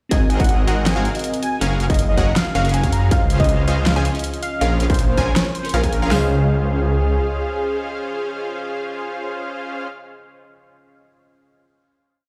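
Heard through a big sound system in a bare stone room with light reverb, this playful, euphoric future bass piece hits in half-time with two layered dubstep drum kits, one carrying a distorted kick and huge snare and the other adding bright hat rolls, beneath a thick detuned saw bass, punchy supersaw stabs and glassy digital keys that pump with sidechain, while a velvety lead sings a repeating riff melody with vibrato and dub echo and a very quiet unison pluck doubles the chords in arpeggios, until the drums stop by 6.2 seconds and the piece settles onto a final chord.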